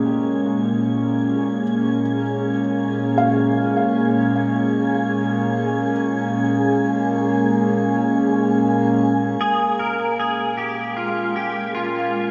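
A breathy, full-bodied pad with chorus holds sustained Bbm7 chords up front in this serene, reflective ambient fragment, cut from a longer piece and soaked in lush hall reverb. Behind it, a felt-muted upright piano plays intimate arpeggios with delay and audible action noise, while a reedy harmonium drone and a wind-like tuned noise texture both fade in over the first 9.4 seconds. At 9.4 seconds a clean, twangy pedal steel guitar enters up front with a short slide melody, shaped by volume swells, ensemble chorus and delay.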